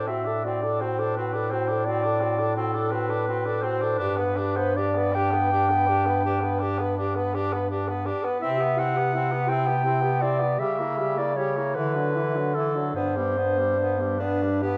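A lilting 12/8 pulse, stretched and relaxed by rubato, carries this lyrical classical passage for a single-reed quartet, cut from a longer piece. A mellow clarinet sings the melody with a soft attack, sitting up front as the loudest voice. Just beneath it, a clear, close-miked alto saxophone traces a second line, while a tenor saxophone adds accompaniment with vibrato, sounding distant and roomy. A bass clarinet anchors the harmony up front, its low register giving the ensemble a warm foundation. All four play together for the full 14.8 seconds, moving from a D7 over A to G, then through Cmaj7, C#dim7 and Dadd9 before settling back on G, all bathed in a moderate recital hall reverb that lends a gentle, warm glow.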